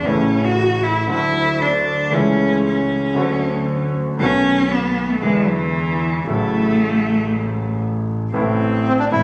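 A focused, bowed cello with vibrato opens this dramatic, tense tango excerpt in A major at 116 BPM with a rubato feel, soloing up front over an intimate grand piano with audible action noise and an earthy bowed double bass through chords moving from A to Amadd9, until a dark, reedy bandoneon takes the melody at 8.9 seconds, all captured on a phone in a club room with light reverb and compression.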